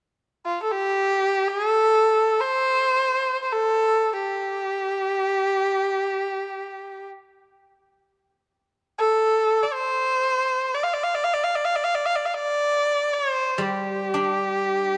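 Flowing in free time, this graceful, festive passage of Chinese traditional chamber music is cut from a longer piece and unfolds as a single unbroken section. A lone bowed erhu carries the melody from 0.5 seconds, sitting up front with a focused, slightly boxy tone shaped by vibrato and portamento. For most of the passage the erhu sings by itself, its mid-register line giving the music an elegant, celebratory poise. At 13.6 seconds a guzheng joins in accompaniment, played with fingerpicks in its lower-middle register, its bright, silvery strings ringing out close to the listener. The whole is bathed in a wet spring reverb with a 2.7-second decay, lending the intimate ensemble a lingering, airy bloom.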